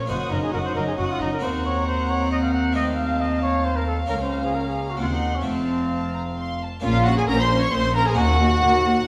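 A mellow, distant trumpet carries the melody alongside a rich, gut-strung violin section high above, giving this stormy, dramatic baroque-style concerto movement in Bb minor its voice at 134 BPM in a straight 3/4. A second violin section plays a close second line, while a dark viola section and a brilliant, plucked harpsichord in the background fill out the accompaniment, and a nasal cello section and warm double basses anchor the bass, all strings bowed with light vibrato in period style. The ensemble sounds from further back in a wet recital hall, and the passage, cut from a longer piece, turns to a new section at 6.8 seconds.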